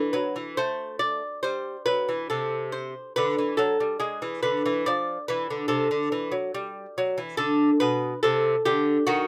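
A classical, baroque-style lute dance in a solemn, introspective mood, this brief fragment of a longer piece features a solo lute, bright and delicate with fingerpicked double nylon strings and some octave-doubled courses, sitting up front and moving with rubato through chords such as Am, E7 and Bm7 in a rough home demo mix touched by light reverb.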